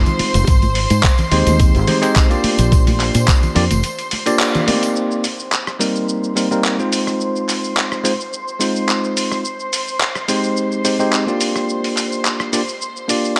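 This nu-disco excerpt opens at 0.0 s with a bell-like, clean tine electric piano carrying the accompaniment through a tape echo, over a dark, bowed string section holding sustained chords with a soft attack and light vibrato. Both parts pump with sidechain compression at 107 BPM in 4/4, with a slight 16th-note swing giving the sleek, groovy feel its lilt. A punchy, foam-muted fingered electric bass sits up front, joined by a gritty, thumpy sampler-style electronic kick and a dusty soul drum kit of cabasa, handclaps, hi-hat and rim click, while bright tambourine and congas played with soft hands add small-room sparkle. The bass drops out at 3.8 s for a short break punctuated by a band accent, and from 5.0 s the strings, already low-pass filtered, move through a filter sweep as the harmony shifts from Abmaj7 and Gm7/Bb to Cm7 and Fm7 before returning. Light reverb keeps the intimate, close string sound and the direct keys and drums feeling polished and forward.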